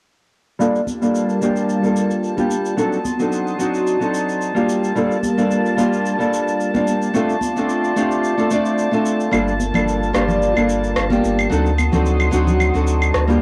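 At 0.6 s a small, fingerpicked nylon-string guitar sits up front, colored by a low-pass filter, cassette tape and tape echo, over a lush, warbling, detuned unison pad, a layered electronic shaker, claves and rim click, and soon bright, high-tuned congas in the background and a calm, glassy drifting glass-harmonics texture, until a deep, round sub bass arrives up front at 9.3 s in this relaxed, swung 110 BPM sunset chillout passage in G minor, moving between Gm9, D7b9 and Dm7 chords with a spring-reverb, home-cassette sound.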